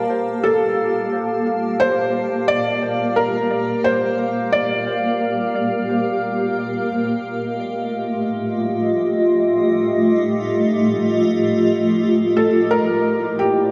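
A felt-muted upright piano and a granular cloud pad open together, setting an intricate, eerie IDM mood at 88 BPM in 4/4 with a straight feel, in G minor and tuned to A4 = 441 Hz. The piano carries the melody between G4 and D5, its soft, intimate tone rounded by thin felt and trailed by an analog delay, and it sits up front before stopping at 6.9 seconds. Beneath it, the pad holds sustained chords from A3 to A5 throughout, its detuned, blurred sine texture evolving through a moving notch, slow attack and long release, with its own built-in reverb adding a dark, full-bodied cloud. The harmony moves from Gm9 to F9/A at 7.3 seconds and on to C9 at 12.7 seconds, while the pad carries the middle stretch alone. The piano returns at 12.4 seconds for a brief closing phrase, and a plate reverb with a 2.7-second decay soaks the dreamy mix in this fragment cut from a longer piece.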